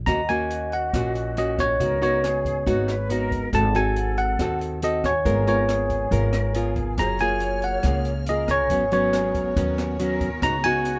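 In a straight 4/4 bossa nova groove, this wistful, smooth excerpt puts a bright, barky tine electric piano melody up front over fingerpicked nylon-string guitar, a woody pizzicato upright bass and a dark open jazz kit with punchy kick, hi-hat and rim click, while an airy flute section and a ringing vibraphone sit in the background, joined by a lush bowed string section at 7.0 s just before the vibraphone drops out at 8.9 s.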